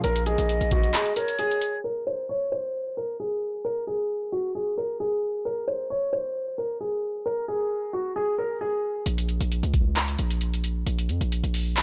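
A hard-hitting, dark trap cut opens with a dark, mellow, intimate baby grand piano melody, a heavy, distorted 808-style bass and an electronic drum kit of knocking kicks, metallic hi-hats and handclaps, all up front in a half-time feel. At 0.3 seconds a distant, hollow silver concert flute adds a brief, pure second line with vibrato and tape echo, and from 0.9 seconds the kick drops out for a moment. From 1.8 seconds the piano carries on alone, its audible action noise intact as a filter sweep moves over it through the middle stretch. The aggressive, sine-based bass with its noise layer and fast, decaying attack returns with the drums at 9.1 seconds for the closing bars. The whole mix sits in a moderate scoring-stage reverb and sounds blown-out and overdriven, with a low-pass filter dulling its top end, in a fragment taken from a longer piece.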